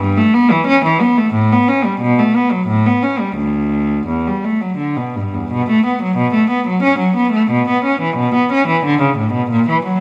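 A lone bowed cello, rich and reedy with a gut-string, period-style tone, sits up front in a moderate recital-hall reverb, unfolding a serene, flowing baroque-style suite movement in 3/4 at 83-92 BPM with rubato, settling into B minor from 5.5 seconds while ranging from D2 to C#4 in this brief cut from a longer piece.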